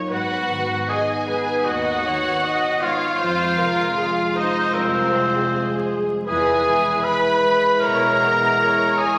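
Soaked in wet scoring-stage reverb and overlaid with vinyl crackle, this cinematic excerpt unfolds with a rubato, longing and bittersweet feel. A distant, vibrato-laden violin section carries the melody, while a second violin section and a punchy oboe share a second line. Beneath them, a smooth viola section accompanies, dark French horns sustain chords, a thumb-plucked concert harp rings out arpeggios in the background, and a focused cello section holds the bass until 8.5 seconds.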